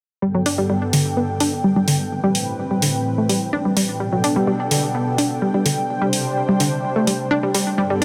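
A punchy, detuned sawtooth pluck with a noise layer and a fast attack plays delayed arpeggios up front, with a filter sweep running across it from 0.2 s, in this euphoric, expansive progressive house excerpt. Alongside it, a lush, thick, nasal unison pad with chorus holds bright sustained chords through Gadd9, Am7, Gadd9/B and Csus2, with a soft attack, long release and its own filter sweep. An overdriven, layered electronic hi-hat, re-recorded in a small room, joins at 0.5 s in a straight 4/4, and a light reverb colours the mix.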